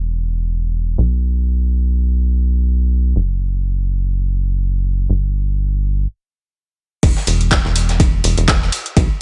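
Swung 16ths at 124 BPM in 4/4 set a moody, late-night deep house groove in E minor, carried at first by a rubbery, hollow square-wave bass that sits up front with a fast filter pluck, tube saturation and sidechain pumping. After a brief stop at 6.1 s, the drop lands at 7.0 s, bringing in a deep, layered electronic kick, an overdriven, dry analog drum machine playing crash, handclaps and hi-hat, and a gritty, tape-toned sampler-style kit adding high-passed ride and a medium-tuned snare. Digital ambience surrounds the mix in this short cut from a longer piece.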